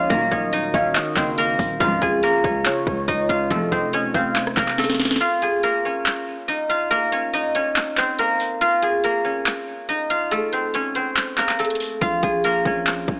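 Heard through a small speaker with light reverb, this menacing, brooding half-time trap excerpt at 141 BPM in Bb minor is led by an up-front guzheng, its silvery fingerpicked notes ringing through digital delay, while a velvety sawtooth synth lead with vibrato and portamento adds a second line until 4.3 seconds. Veiled con sordino strings fade out at 3.9 seconds, while a dark, detuned analog pad and a heavy, distorted 808-style bass fill the low end until a drum fill brings them to a halt at 5.2 seconds, leaving only the guzheng and drums. The overdriven trap kit keeps driving with sharp snare, bright hats, claps and rim clicks, its hard-clipped kick muted until the bass and kick return at 12.0 seconds.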